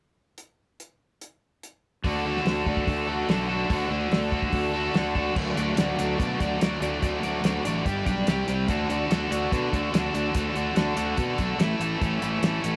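Classic rock with a confident, driving straight feel, this short cut from a longer piece opens with a cloth-damped drum kit playing alone from 0.4 seconds, its thuddy, fat snare, tight kick and dark cymbals sounding dry with a rolled-off top. At 2.0 seconds a crunchy overdriven guitar and a fuzz-toned fingered electric bass enter together. The guitar carries the riff, bright, picked and double-tracked, sitting up front in the mix and ranging from A2 to D5. Beneath it the bass is round and dark, amped and overdriven, holding the low end between G1 and B2. The harmony settles on D before moving through G5, C5 and back to D, later touching A5 and A, all inside a small room ambience.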